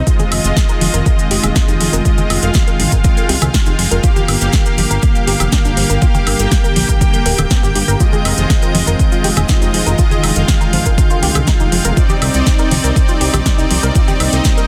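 A driving, straight 4/4 pulse at 121 BPM anchors this expansive progressive house excerpt in F dorian, where an overdriven, up-front electronic kick and a deep house kit with punchy snare, metallic hats and woodblock lead, backed by background congas and cowbell with sidechain pumping, a grainy cabasa, a fat detuned sawtooth bass, soft supersaw stabs with tape echo, tight nasal arpeggios, an airy pad under a filter sweep, and a very quiet glassy texture entering at 1.0 s, all moving through Fm7, Gm7 and Cmadd9 in a dense, heavily limited mix with light digital ambience.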